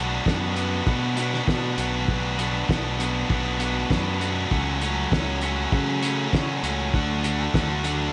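A biting, overdriven picked guitar riff sits up front in this bittersweet, restless indie rock excerpt, over a second overdriven guitar in the background washed in lush chorus and digital delay, a bright, growly picked bass, and a muffled, cloth-damped drum kit with a fat snare and tight kick entering at 0.3 seconds, all moving from B minor through F#m/C# to D in a dark production with light studio reverb.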